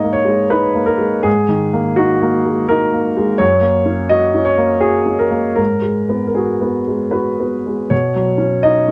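A gently rubato three-beat sway carries this melancholic, intimate excerpt of neoclassical minimalist piano, where a single upright piano sounds woody and up front, moving through G#sus2, F#, G#m7 and, at 7.9 seconds, Badd9. The recording has the worn character of old cassette tape, with a warbling pitch drift coloring the moderate booth ambience and lending the short passage a faded, keepsake quality.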